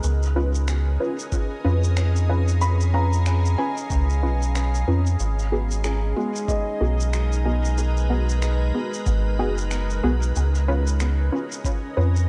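A hazy, lightly reverberant digital ambience frames this short meditative ambient dub passage, cut from a longer piece and moving at 93 BPM in 4/4 with a 16th-note swing. A deep, round sub bass sits up front alongside a muffled, thumpy electronic kick that enters at 1.3 seconds, while a faint electronic shaker and finger snaps add small-room texture and dub echo from the start. An organ-like pad holds calm, evolving chords with a bright, detuned chorus shimmer, drifting from C#7 to G#m7 and back to C#7. A felt-muted upright piano traces soft, intimate arpeggios through dub echo until 10.4 seconds. Filtered chord stabs, dark and sawtooth-edged, punctuate the groove through phaser and a cassette-tape grain, their dub echoes trailing into the haze.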